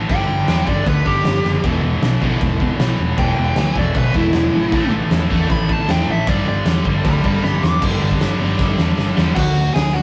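Rebellious and energetic, this punk rock excerpt charges ahead at 155 BPM in a straight 4/4, captured as a rough rehearsal-room recording with light reverb. Two picked, double-tracked rhythm guitars drive the riffs: a bright, scooped high-gain guitar that drops out at 9.4 seconds, and a sludgy overdriven guitar sitting further back in the mix. Beneath them, a hollow-body short-scale electric bass gives a round, amped low end, while a big acoustic drum kit stays up front with a fat snare, punchy kick, crash and hi-hat, adding fills, including one from 7.4 to 7.8 seconds. Over the top, a dark, smooth overdriven lead guitar plays a solo through the opening section, moving over power chords on G, E and A before the passage turns at 7.8 seconds toward a close on D.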